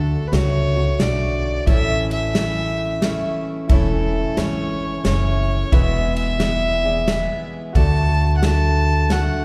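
A sunny, heartfelt honky-tonk waltz in A major at 89 BPM opens with a rich, nasal bowed fiddle carrying the melody over a full-bodied picked dreadnought acoustic guitar, a clear upright piano with audible action noise tucked in the background, and a thumpy pizzicato upright bass with woody gut strings up front, while a natural, airy country drum kit with a punchy kick, snare and ride joins at 0.3 seconds, all set in the long, wet reverb of a concert hall as the chords move from D to A, E and back to D in this swinging excerpt from a longer piece.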